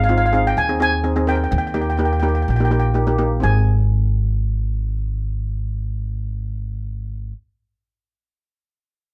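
A straight 4/4 groove at 125 BPM carries this short calypso cut from a longer piece, set in Ab major with a carefree, sunny mood. Two steel pans sit up front, their metallic, shimmering tone ringing through the light reverb. The lead pan, played with medium rubber sticks, carries an airy melody high in the range between F5 and Ab5. A double seconds pan, struck with hard rubber sticks, adds a mid-forward accompaniment below it, entering at 0.1 seconds. Underneath, a pizzicato upright bass with steel strings gives a woody, dark foundation and also sits up front, all captured by close, detailed microphones. The harmony moves from Ab to Eb and back to Ab as the first section gives way to a second at 3.4 seconds.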